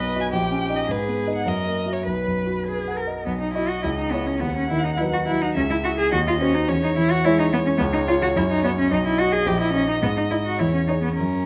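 Cheerful and spirited, this quick classical-period movement for piano trio, cut from a longer piece and played with rubato in 2/4, sets a focused, smooth-topped violin melody with vibrato over an expressive, up-front cello line that adds soft attacks and portamento, while a polished, present grand piano supplies the accompaniment, all captured by close, detailed microphones with light reverb.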